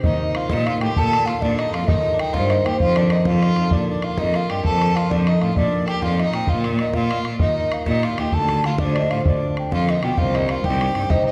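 An airy wooden baroque flute carries the tongued, vibrato-tinged melody through this spirited, wild Celtic slide excerpt in 12/8 at 130 BPM, over a biting, distant bowed fiddle second line, ringing fingerpicked concert harp accompaniment, a focused, up-front bowed cello bass and a boomy, close and dry bodhran, all set in the wet reverb of a church or concert hall.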